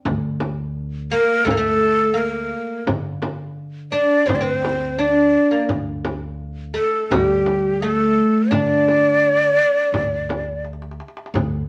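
Warm and passionate, this Arabic maqam ensemble excerpt sets a breathy, bright ney with vibrato up front over a woody, double-strung fretless oud, while a dark pizzicato upright bass, a small bright frame drum and a dry clay darbuka in the background hold a straight 4/4 pulse before a drum fill at 10.6 s, all in a moderate studio reverb.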